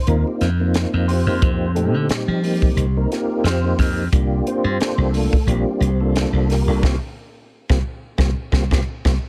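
Riding a lightly swung sixteenth-note groove at 89 BPM in 4/4, this short cut from a longer electric jazz fusion piece feels funky and soaring. A slap bass sits up front with a bright, amped punch, while a crisp acoustic fusion drum kit lays down hi-hat, a punchy kick and a high-tuned snare in an airy, polished studio sound. A mellow tonewheel organ supplies the accompaniment, its round, dark, clean tone colored by chorus vibrato and a slow rotary speaker. The harmony moves from F9sus4 to C9sus4 at 4.1 seconds, and the whole band hits an accent starting at 6.8 seconds before a drum fill closes things out at 8.9 seconds. A small room ambience surrounds the group.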